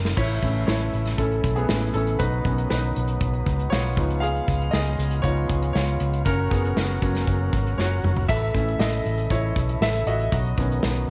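A steady, straight 4/4 pulse at 118 BPM drives this anthemic, hopeful piano-led pop excerpt, set up by an acoustic drum kit played with bundle sticks in a studio room, with a punchy kick, a medium-tuned snare, hi-hat, toms, and crash and splash cymbals, plus fills at the very start and again from 7.8 to 8.3 seconds. Underneath, a vintage fingered electric bass, foam-muted and amped, gives a dark, round low end sitting up front in the mix. A clear concert grand piano with deep bass and an open tone carries the lead, soloing from 0.2 seconds to the close while also supplying the accompaniment. Behind it, an overdriven tonewheel organ holds thick, gritty sustained chords, with key click, third harmonic percussion, vibrato and a subtle chorus, set lower than the other parts. The harmony moves from A through Badd9, C#7 and F# before returning to A and Badd9, and the whole piece sits in a small room with light reverb and a soft top end.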